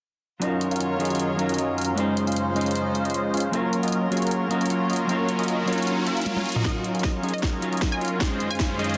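Future bass at 154 BPM in a half-time 4/4 feel, this lush, bright fragment of a longer piece is tuned to A4 = 436 Hz and moves between Ebm9 and Dbmaj9 chords over a Gb bass. From 0.4 seconds, huge, detuned sawtooth supersaw chords carry the riff up front alongside a dark, clean, fingered electric guitar colored with 12-bit sampler grit, low-pass filtering and delay, while a reedy, gut-string chamber ensemble holds bowed sustained chords beneath. A trap kit of sharp snare, bright hats and toms sits overdriven and forward in a small room, and the guitar, strings and supersaws all pump against the sidechain. A background riser enters at 4.8 seconds and a drum fill leads into a build-up at 6.7 seconds, where a filter sweep moves across the supersaws and a punchy, phased unison pluck adds a high melody with digital delay in the background. A hard-clipped electronic kick drives this build, all within a lush hall reverb and a dense, heavily limited master.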